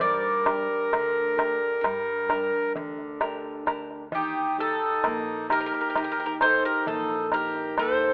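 A metallic, picked Greek bouzouki with slapback echo leads this reflective, dark Greek folk excerpt in 9/8 at 131 BPM, up front beside a reedy, hollow accordion second line, with bright fingerpicked nylon-string guitar, a woody pizzicato upright bass in the background and a crisp metal-shell darbuka played with soft hands, moving from Gm to Eb at 4.1 seconds through a moderate plate reverb and a telephone-like sound.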